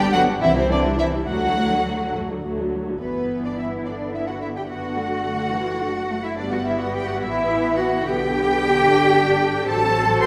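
Cheerful and spirited, this quick classical-period movement for string orchestra in G major moves in 6/8 at 72 BPM, with a rich, focused violin section carrying the melody from the background while a second violin line, lush viola accompaniment full of vibrato and portamento up front, smooth-topped cello and dark, soft-attacked double bass fill out the texture, all heard from further back on a wet scoring stage, before the harmony settles into a new section at 3.0 seconds in this excerpt cut from a longer piece.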